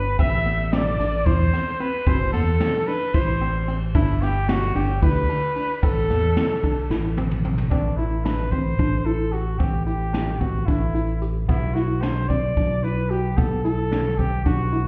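In a straight, uneven 7/8, this tense, intricate progressive instrumental pairs a breathy, vibrato-laden trumpet melody with a clear, very quiet flugelhorn second line that drops out at 7.2 s and returns briefly at 14.2 s, over dark, woody pluck arpeggios with chorus, an up-front fingered electric bass and a distant brushed drum kit with a boomy kick that plays a fill at 6.9 s, all heard muffled as if through a wall in a stony room.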